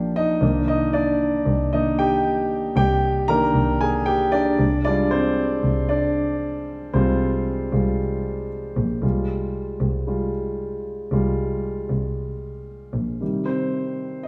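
A concert grand piano leads this driving, dramatic piano-driven pop piece in straight 4/4, its warm, open tone sitting up front with a deep bass register as it carries the accompaniment across a C3 to Bb5 range. Beneath it, a single bowed double bass adds a rich, expressive line between Bb1 and C2, played close with vibrato, portamento and a soft attack. The harmony moves from Cm7 to Fmadd9/C and later settles on Cm, with the piano holding the solo spotlight through every section. The double bass drops out at 13.2 seconds, and the piano plays alone until the fragment ends at 14.3 seconds. A wet scoring-stage reverb with a 2.1-second decay gives the recording a spacious, cinematic sheen, and the passage is cut from a longer piece.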